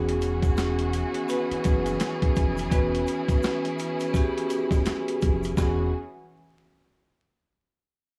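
A gritty, pitched-down boom-bap drum kit with a thumpy kick and high-tuned snare sits up front beside a ringing, metallic vibraphone in a boxy small room with cassette-tape colouring, while a dark, round fingered electric bass, a lush, distant bowed string section holding an E69 chord, a very quiet grainy egg shaker and vinyl crackle shape this confident, nostalgic swung hip-hop excerpt cut from a longer piece.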